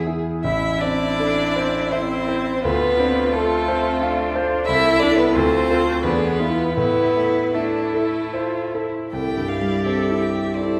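Piano and viola open this solemn, elegiac slow movement for piano quintet in 3/4, cut from a longer piece: a clear concert grand with deep bass and long sustain sits up front beside a focused, bowed viola. A smooth, even solo violin carries the melody with vibrato from 0.4 s over a second violin in the background, and a rich, smooth-topped cello joins at 1.2 s as another background line. The harmony moves freely in rubato from Am through Dm7 and E before turning to C at 9.1 s, all of it heard from further back in a reverberant recital hall.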